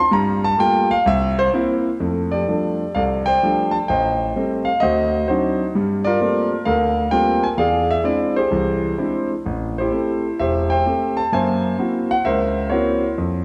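A moderate concert hall reverb, about 2.0 seconds long, surrounds this recording, giving it the airy depth of a church or concert hall. It is a short, playful excerpt of solo jazz in F major at 129 BPM in 4/4, with a 68% swing on the eighth notes and a loose, rubato feel, tuned to A4 = 445 Hz. A single concert grand piano carries everything, sitting up front with a warm, smooth, vintage character, a deep bass and long sustain, ranging from E1 up to C6. The opening two seconds move through Gm9 and C7 before the harmony settles onto F69 at 2.0 seconds. From there the piece turns through richer colours, Am7b5, D7b9, Gm11 and E7alt, then Am7 before arriving on Gb7#11 at 11.3 seconds, just before the cut at 13.4 seconds.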